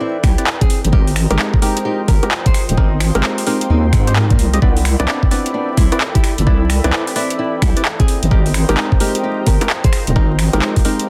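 UK garage in a bouncy, soulful two-step groove at 130 BPM, with a 63% swing on the sixteenths, this short clip is cut from a longer piece. A knocking, up-front electronic kick and a layered garage kit of bongos, finger snaps, handclaps and metallic hi-hats come in at 0.2 s, both re-recorded in a small room. At the same moment a deep, saturated wobble bass built from square and sine waves arrives with chorus, sitting up front, soft and warm beneath the beat. A fingerpicked nylon-string guitar carries the melody through tape echo, while hollow, decaying organ stabs punctuate the Cmaj9 and Abmaj9 chords. Behind them, a smooth, warbling vintage pad pumps with the sidechain, and a moody, very quiet ambient pad adds a dark sub-octave haze. The dense, heavily limited master carries a layer of vinyl crackle and digital ambience.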